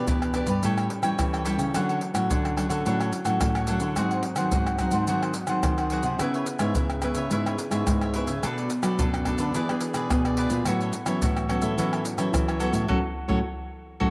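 A bright, crisp cavaquinho and two thumb-plucked nylon-string guitars open this joyful, playful samba and choro fragment in A major, one guitar plucking classical-style accompaniment while the other carries a warm bass line. A hair later, at 0.1 seconds, the percussion section of maracas, surdo, pandeiro and tamborim arrives up front, close and dry, with a tight surdo and hard hands driving a straight 4/4 at 108 BPM. The harmony moves from Em7 and A7 to Dmaj7, then through G#7, C#m7, Bm7 and E7 before settling on A69. The whole band hits a shared accent from 12.9 seconds to the end at 14.1 seconds. The room carries a wet spring reverb, giving the acoustic ensemble a lingering sheen as the passage, cut from a longer piece, breaks off.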